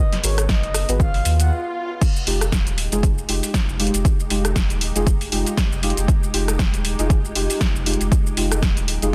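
A breathy, flute-like synth lead with vibrato, cassette-tape color and digital delay opens this late-night deep house excerpt at 118 BPM in F minor, ending at 1.5 s while a barely audible string-machine haze drifts beneath it. A silky string machine, deep mellow detuned chord stabs and a deep sub bass all pump against the sidechain, moving from Abm9 to Fm9 after an electronic swell and a brief stop around 2.0 s. A dry, punchy overdriven kick sits up front, with a layered drum kit of snare, hi-hat, rim click, shaker and crash carrying its own grit under light digital ambience and a dense, heavily limited master.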